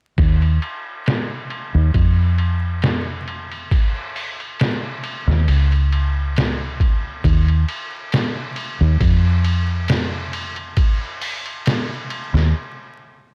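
Trip hop in a dark, hypnotic mood, moving at a slow 68 BPM in 4/4 with a light swing on the sixteenths, cut from a longer piece. A deep dub fingered electric bass carries the low end from 0.2 to 12.5 seconds, sitting up front with a round, punchy, foam-muted tone that stays between Db2 and B2. A trip hop sampler-style drum kit plays over the same span with kick, snare, hi-hat and ride cymbal, sounding compressed, pitched down and gritty, with a thumpy kick and a medium-tuned snare. The kit has a tape-like character and the feel of being re-recorded in a small room, and a low-pass filter dulls every drum and the room sound, though it stays forward in the mix. The recording is dry with little reverb and a layer of vinyl crackle, and both parts drop out together for a brief stop from 12.5 to 13.3 seconds.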